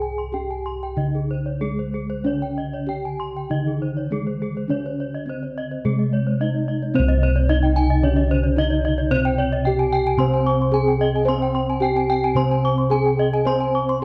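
A mellow bronze metallophone melody struck with padded mallets opens this hypnotic Balinese gamelan passage in C pelog, alongside round, up-front bossed gongs in the bass and a ringing wooden-mallet arpeggio line; a band-limited, vintage-toned horn-mallet arpeggio joins at 0.5 seconds and a low metallophone accompaniment at 2.2 seconds, all moving in a straight 4/4 at 94-111 BPM, while the paired tuning of the metallophones gives them shimmering beats inside a dark production with moderate recital hall reverb.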